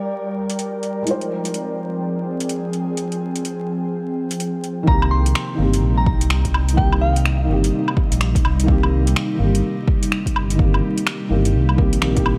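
Future garage at 126 BPM in C minor with a swung 16th feel, rainy and wistful, cut from a longer piece and steeped in vinyl crackle. A felt-muted upright piano, intimate with audible action noise, and an airy, breathy pad play Gm7 and Fm7 chords with sidechain pumping, while a deep house kit of finger snaps, metallic hi-hats and woodblock enters at 0.5 seconds with overdrive in a small room. At 4.9 seconds the harmony settles on Cm7 as a dark, detuned saw bass rumbles up front alongside an overdriven electronic kick, and a glassy FM bell with chorus, tremolo and tape echo briefly sings a crystalline, warbling melody.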